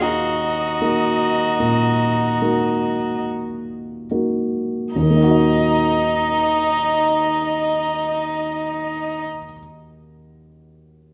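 The recording sits in a moderate scoring-stage reverb that gives this short excerpt from a longer romantic piano quartet movement a solemn, elegiac air. It moves slowly and with rubato, easing back further over the first 4.9 seconds before the music turns to a new section. A single violin carries the melody close to the listener, playing sul tasto with light vibrato, a soft attack and an airy bow. A second violin and a cello play supporting lines, both bowed sul tasto with gentle attacks, sounding distant and floating; the violin has a rich, pure tone. The baby grand piano accompanies from up front with a natural, intimate sound, its action noise audible. The strings stop at 9.2 seconds, and the piano carries on alone until 11.1 seconds.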